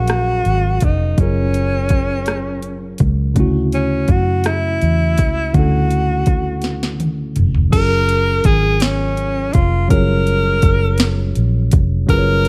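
Slow six-eight R&B in F# major at 55 BPM, sensual and warm, with a breathy, whispered tenor saxophone carrying the melody up front, its scooped notes and jazz-style vibrato touched by slapback echo. A worn, slightly out-of-tune tine electric piano supplies the F#maj9 and Dmaj9 harmony, while a dark, foam-muted fingered electric bass adds round, punchy support. A produced electronic drum kit with a soft kick, sharp snare and overdriven grit, re-recorded in a small room, sits prominently and plays a fill from 6.6 to 7.7 seconds before the harmony returns to F#maj9 for a new section, all in a dry, close mix.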